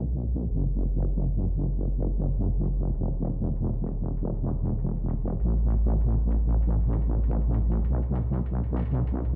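Gritty and playful, this short glitch hop excerpt moves at 98 BPM in 4/4 with a 16th-note swing, built on a heavy, saturated sawtooth wobble bass with chorus sitting up front between E1 and B1, while a layered electronic hi-hat with bright, low-pass-filtered hats stays in the background under a filter sweep, the whole mix heard through a stone room on a big sound system.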